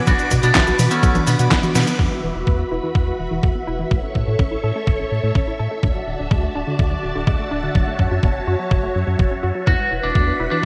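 Bright 1980s-style digital production with vinyl crackle and a lush hall ambience frames this nostalgic, danceable italo disco passage, cut from a longer piece. A thumpy, tape-warm electronic kick and a round, deep analog bass anchor the groove beneath a swirling, warbling string machine and a detuned sawtooth pluck playing chorused arpeggios with a filter sweep. An up-front, twangy lead guitar with gritty sampler coloring and digital delay carries the melody at the start and returns at 9.7 seconds, while an 8-bit drum machine with handclaps, cabasa and a medium-tuned snare drives the opening until a fill and band accent at 1.8 seconds lead into the next section.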